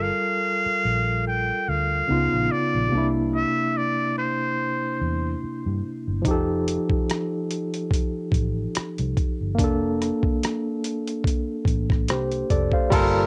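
An R&B and neo-soul groove at a slow 72 BPM opens with a muted trumpet singing the melody, its nasal, breathy tone carried with light vibrato and scooped notes that feel intimate and sultry up front. Beneath it, a barky tine electric piano lays down a bright, clean accompaniment while a dark, round fingered electric bass holds the low end, both running through the whole 13-second cut. Harmony moves from Gm9 through C#9 and C9 to F9 and Bbmaj9/F, with a gentle swing on the sixteenths. The trumpet falls silent at 5.4 seconds, and soon after, at 6.2 seconds, a dusty sampler-style drum kit enters with a gritty, compressed sound, a thumpy kick, hi-hat, rim click and crash cymbal sitting forward in the mix. In the final moments a tonewheel organ slips in behind at 12.9 seconds with sustained chords, its fast rotary speaker, chorus vibrato and key click adding a faint shimmer. The dry, close sound and cassette tape coloring on the trumpet, piano, drums and organ give the piece a smooth, homespun intimacy.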